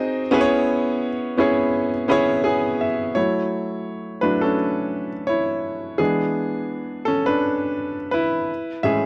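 Soul piano at 84 BPM in 4/4 with a gentle sixteenth-note swing, bittersweet and cinematic in mood, cut from a longer piece. A solo baby grand sits up front, clear and intimate with audible action noise and short sustain, moving through C#m7, F#m7 and E7 before settling on Amaj9, with a fill at 1.7 seconds leading into a solo passage from 3.2 seconds. The sound is dry and close, like a 1970s studio recording with little reverb.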